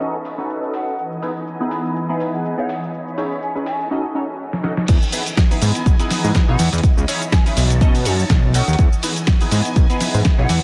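A filter sweep opens this sunny, feel-good slice of filtered disco house, with a punchy, detuned polysynth comp, a swirling, vintage string machine with phaser and gritty sampler character, and a dusty, tape-toned soul drum kit of hi-hat, rim click, shaker, snare and crash, all pumping and muffled under low-pass filtering, while a tambourine sits barely audible in the background until it drops out at 3.9 seconds. At 0.7 seconds an airy, hollow concert flute enters far back in the mix, its vibrato-laden line carried on tape echo. A drum fill at 4.5 seconds leads into the drop at 4.9 seconds, where a fat, thick analog sawtooth bass and an overdriven, up-front electronic kick arrive. The swung groove rides lush jazzy harmony, moving through chords such as Emaj7, C#m9 and B9. Everything sits in a dreamy, reverb-soaked mix with a cathedral-like tail and lossy artefacts, and the recording is cut from a longer piece.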